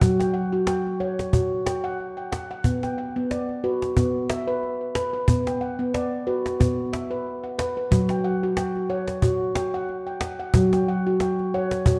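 Hypnotic and gentle, this 12-second cut from a longer piece sits in meditative world music, moving at 91 BPM in 4/4 with a light swing on the sixteenths and tuned to A4 = 442 Hz. A nitrided-steel handpan carries the music in ringing arpeggios from F#3 to G5, its sharp finger strokes sounding bright and airy up front, with a delay trailing each note. Beside it, a snappy acoustic cajon with snares is struck with hard hands, heard close and dry at the front of the mix. The harmony rests on F#5, shifts to Bm at 2.7 seconds, and returns to F#5 at 7.9 seconds. A wet echo-chamber reverb with a 2.0-second tail gives the dark, warm production its sense of space.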